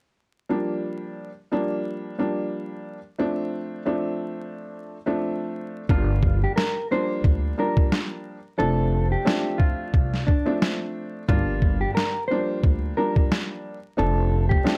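A dark, woody upright piano with a cassette-tape tint opens alone at 0.5 s, trading Gm7 and F6 chords in G minor over a bed of vinyl crackle and light reverb, setting a reflective boom-bap hip-hop mood at 89 BPM with a lightly swung 4/4 feel. At 5.9 s a clean, fingered electric guitar carries the melody through spring reverb, while a growly pizzicato upright bass and a gritty, pitched-down sampler kit with a thumpy kick and medium-tuned snare arrive up front. The dark groove runs on until the cut at 14.8 s, with the bass dropping out just before, at 14.5 s.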